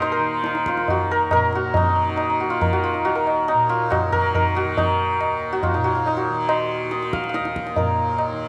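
In a straight 7/4 at 139 BPM that speeds up over its 8.5 seconds, this longing, solemn Hindustani classical fragment in Eb raga shivaranjani, tuned to A4 = 442 Hz, sets a bright, shimmering hammered santur melody up front between Eb4 and F5 over a softly plucked, buzzing tanpura drone from Eb2 to Eb3 and a high-tuned, short-ringing tabla with a small-room sound, all within a light studio reverb.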